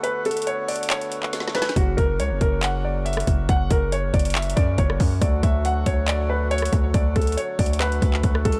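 Brooding and eerie, this short cut from a longer trap and hip hop piece moves with a half-time feel. A warm grand piano carries the melody up front, polished and present, softened by a low-pass filter and trailed by digital delay, while a reedy, dark accordion holds full, smooth sustained chords beneath it. The electronic trap kit sits close and produced, with a hard-clipped kick, woody snare, metallic hi-hats, handclaps and rim clicks, all roughened by vintage 12-bit sampler grit. The opening break runs to 1.8 seconds and closes on a drum fill, after which a distorted 808-style bass arrives, aggressive and saturated, its sine tone layered with noise, its fast attack followed by a decay. The chords shift from Bm7 to F# and later D, and the dry, close sound leaves the low end pressing forward.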